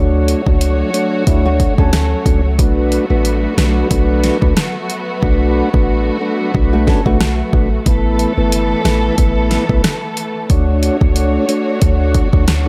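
This dancehall excerpt has a tough, hypnotic mood, built on a lightly swung groove over a progression of major-seventh, minor-seventh and suspended chords. A soft, flute-like tonewheel organ sits up front with audible key click and a slow rotary speaker, while a muted string section holds veiled, con sordino chords underneath with vibrato and sidechain pumping. A clean 808-style bass gives a deep, boomy sine tone with a fast attack that decays into darkness. The deep house drum kit enters at 0.3 seconds, layering a deep kick, fat snare, rim click and hi-hats with a tape-warm, up-front character, and the hi-hats drop out between 5.2 and 7.9 seconds. A thumb-plucked nylon-string guitar adds brief classical arpeggios in two short spots, first at 1.3 seconds and again at 6.7 seconds, all set in a small room ambience.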